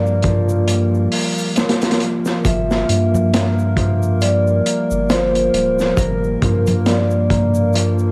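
Recorded at home onto cassette in a small room, this brief excerpt of dark, brooding trip hop rests on a single Gm7 chord over a swung sixteenth-note feel. A gritty, saturated breakbeat kit with a tight kick and rolled-off top sits up front over a deep, round dub sub bass, while an egg shaker and softly played congas ring close by. A warbling, nostalgic pad drifts through chorus and reverb, a thumb-plucked concert harp traces arpeggios through dub echo, and a metallic, boxy vibraphone carries the melody with tape colour and dub echo of its own.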